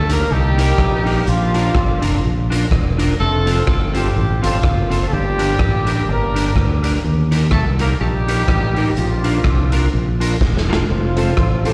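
Ska with a cheerful, joyful lilt and a gently swung feel, cut from a longer live performance heard through a venue's PA in a reverberant recital hall. A tight, vibrato-laden horn section carries the melody in octave doubling, bathed in tape echo, plate reverb and slapback, over a round, up-front fingered bass, a raw garage drum kit with a punchy kick and rolled-off top, and a dark, slightly broken-up picked electric guitar treated with chorus and echoes. A drum fill arrives at 10.4 seconds, and a clear, woody, slightly detuned upright piano adds short stabs from 11.2 seconds at the very end.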